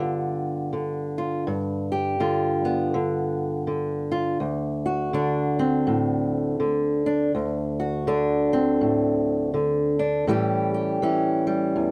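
A swung 4/4 groove at 82 BPM drives this rollicking, soulful blues in D mixolydian, cut from a longer piece and carried by a lone fingerpicked old ladder-braced acoustic guitar that sits up front with a dark, woody, boxy voice and the sound of old strings. The harmony moves from G7 to D7 at 4.4 seconds and on to A7 at 10.3 seconds, with the guitar ranging from D2 to G4. Close, detailed microphones and light reverb keep the sound intimate.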